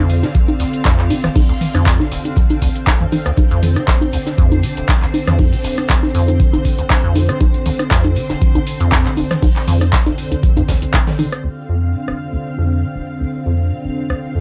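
A gritty home cassette recording with light reverb opens on a hypnotic acid house groove at 119 BPM in 4/4, with a gentle swing on the sixteenths, set in D minor pentatonic over a Dm7 chord and cut from a longer piece. A rubbery, resonant square-wave acid bass carries the riff across a range of D1 to D3, its dark tone shaped by a filter sweep, tube saturation and sidechain pumping. Above it, a lush vintage string machine holds sustained sawtooth chords with a sub octave and ensemble chorus, pumping along with the bass. An up-front deep electronic kick and a booming analog drum machine with metallic hats, cabasa, congas, handclaps, rim click and toms drive the beat, both re-recorded in a small room. A dry acoustic reggae kit with a high-tuned snare, hi-hat and tambourine sits in the background until 11.4 seconds, when the drop ends shortly after a band accent at 10.9 seconds. The kick drops out at 11.0 seconds, and the drum machine carries on until 14.2 seconds.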